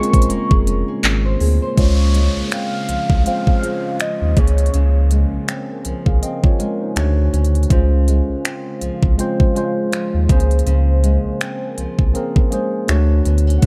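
A dark, dry production frames this smooth, romantic contemporary R&B excerpt in Db major at 81 BPM, its sixteenths swung, with an overdriven trap kit of knocking kick, crisp hats, snaps and handclaps sitting up front beside a deep, full sine-and-triangle sub bass. A clean tine electric piano and a fingerpicked nylon-string guitar, its arpeggios carrying tape echo, fill the middle, while a moody, detuned sawtooth pad with chorus, built-in reverb and sidechain pumping sits in the background, and an electronic downlifter passes through from 1.8 to 7.7 seconds. A velvety, mellow synth lead with chorus, vibrato and tape echo carries the melody until 5.1 seconds and returns briefly at the close, over chords moving from Bbm9 through Dbmaj7 to Dmaj7.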